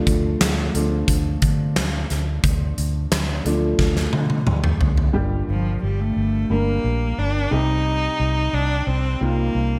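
A woody, boxy upright piano with subtle chorus opens this dramatic, earnest piano-driven pop piece in G minor at 89 BPM, joined almost at once by a dark, round, foam-muted fingered electric bass and a huge arena drum kit with a fat snare, punchy kick, handclaps, hi-hat and toms with gated reverb, whose fill from 3.8 s closes its run at 5.1 s, before a smooth, even, up-front bowed cello with vibrato takes the melody from 5.5 s over Gm and Cm chords in a bright 1980s-style digital production.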